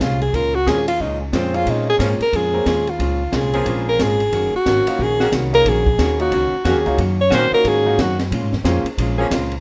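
A bright, up-front alto saxophone leads this sultry, swinging big band excerpt in Bb minor at 181 BPM, its melody carrying light vibrato and scooped notes over a Bbm7 to Ebm7 progression until it drops out at 8.2 seconds. Behind it, a dark, clean hollow-body archtop guitar accompanies, woody pizzicato upright bass holds down the low end, and a small-room drum kit adds dark cymbals, a high-tuned snare and a boomy kick. A soft-attacked saxophone section enters with sustained chords at 0.7 seconds and a brilliant, intimate grand piano with audible action noise joins at 1.5 seconds; plate reverb sits on the horns, guitar and piano in a rough home demo mix.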